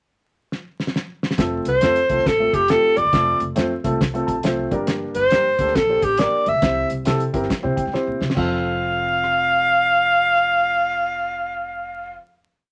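A breathy alto saxophone leads this uplifting, danceable 1960s-style soul piece in F major at 137 BPM, its whispered subtone and light vibrato shaping intimate, song-like motifs up front from 1.7 s. Cloth-damped, thuddy drums open with a fill in the pickup bar and drive a swung soul beat with the snare on all four beats, a fat snare and a tight kick, while a pizzicato upright bass plays a woody, syncopated line with chromatic approach notes beneath mellow grand piano chords in close voicing and short fills. The verse moves through F, Gm and C to a final F chord at 8.4 s, which piano, bass and saxophone hold after the drums stop at 9.4 s, heard in a moderate club reverb with vinyl crackle.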